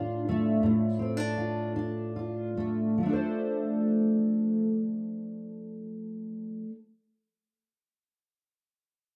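Tender and heartfelt, this short pop fragment in 6/8 and F major features a double-tracked, fingerpicked steel-string jumbo acoustic guitar, full-bodied and up front, slowing down through its opening 3.0 seconds on Dm/A before settling onto F6 and playing until 6.8 seconds in a moderate studio reverb with a rough home-demo feel.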